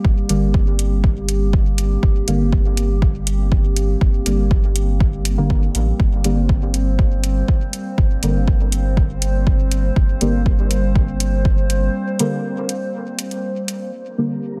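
An overdriven, up-front electronic kick anchors this meditative, nocturnal dub techno excerpt alongside metallic overdriven hi-hats, a round sine sub bass, dark detuned chord stabs carrying dub echo, chorus and phaser, and a warbling lo-fi tape-like pad, with the bass, stabs and pad all pumping to the sidechain, before a break at 11.9 s gives way to a faint, breathy wind-like noise texture at 14.1 s.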